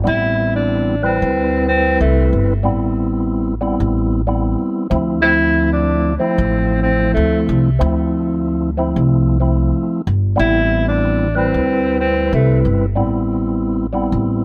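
A percussive tonewheel organ opens this reflective yet tough hip hop piece at 0.0 s, its soft, flute-like tone carrying key click and third-harmonic percussion through a fast rotary speaker and a cassette-tape colour. Almost at once an upright bass and a breathy tenor saxophone join, settling into a swung 93 BPM groove in A minor that moves from Am7 to Dm7 and back to Am7. The pizzicato bass sits up front with a woody, thumpy character from its steel strings, holding the low end between G1 and D2. The saxophone carries the melody in a jazz style, its whispered subtone, scooped notes and vibrato given an intimate yet distant, roomy quality by tape echo. The saxophone stops at 12.6 s, leaving organ and bass to carry on until this fragment of a longer piece is cut off at 14.4 s, all within a light reverb.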